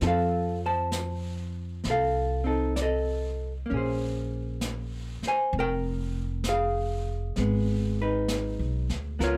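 A slow 4/4 at 65 BPM carries a gentle swing on the eighth notes, setting a wistful, intimate jazz ballad mood in F minor. A vintage hollow-body electric guitar sits up front with a dark, clean, picked tone, comping through F7, then Bbm9 at 3.7 seconds and Abm at 7.4 seconds. Beneath it, a pizzicato upright bass with gut strings sounds woody and thumpy, also placed close to the listener. A jazz kit played with brushes, featuring snare and hi-hat, sits distant and roomy, its medium-tuned snare heard as though from a small room. Light reverb surrounds the recording, and all three parts play together for the full 9.4 seconds of this short cut from a longer piece.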